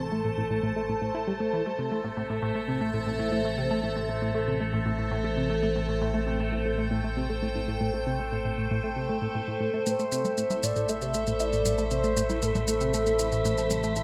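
A bright, up-front wavetable pad leads this excerpt of ambient, sequencer-driven space music, holding morphing, triangle-based chords from A3 to A5 through a phaser and its own reverb. Beneath it, a tight sequenced synth drives a detuned sawtooth riff with a filter pluck and a moving notch, softened by chorus and tape echo. An analog drone holds A1 as a warbling, vintage bass of wave-folded pulse and sawtooth tones under chorus. An airy, breathy noise texture sits in the background, tuned like wind between A4 and B5. At 9.9 seconds an expressive synth lead enters with a smooth, dark melody colored by vibrato and tape echo, joined by electronic shaker and congas carrying a tape-warm echo. Set at 117 BPM in 4/4 with a straight feel and resting on A minor, the piece feels expansive and cosmic, bathed in a plate reverb with a 2.5-second decay.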